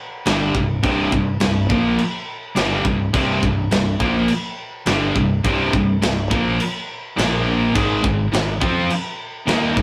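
Dark and aggressive, this heavy metal excerpt in C minor drives at 104 BPM in a straight 4/4, with three picked guitars riffing together from 0.3 seconds: an up-front, high-gain distorted guitar leads, a scooped high-gain guitar sits in the background, and a double-tracked, compressed overdriven guitar lies very quietly beneath. A growling, punchy fingered bass with overdrive supports from the background while a tight acoustic kit of kick, medium-tuned snare and crash sits up front with a mid-forward, rolled-off top. The chords hold on C5 before moving to Bb5 at 7.2 seconds and Ab5 at 7.8 seconds, all captured as a rough rehearsal-room recording with light reverb.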